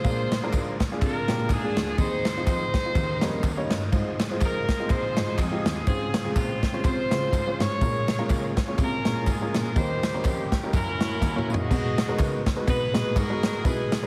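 Uptempo gospel at 124 BPM in Ab major, this soulful, reverent passage swings its eighth notes in 4/4 and is cut from a longer piece. An edgy, up-front saxophone section carries the melody in a jazz style with vibrato and a slapback echo, while a woody, slightly detuned upright piano supplies accompaniment with audible action noise. A bright tonewheel organ, lightly overdriven with key click and a fast rotary speaker, holds sustained chords very quietly until it drops out at 11.7 seconds. Beneath them a muted cello, one bowed player con sordino, carries the bass line with a veiled tone, vibrato and portamento, and a swinging big-band drum kit with dark cymbals and a punchy kick sits up front, punctuated by a drum fill from 11.2 seconds. Egg shaker and group handclaps add a faint live-room layer, and the whole mix has light reverb and a heavily compressed radio sound as the harmony moves through seventh and sixth chords before landing on B6 at 11.7 seconds.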